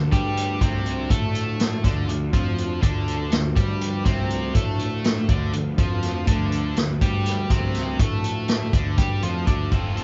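Psychedelic rock in a straight 7/8, mysterious and trippy, built on a static D minor harmony as a band plays together in one room with light reverb and a dusky, treble-shy sound. A punchy, up-front vintage drum kit of kick, snare and hi-hat drives under a bright, double-tracked overdriven stack guitar riff and a dark, round fuzz bass. In the background sit a chorused string machine's mellow, slow-attack cello chords and a reedy, breathing harmonium drone on a low D that stops at 9.8 seconds.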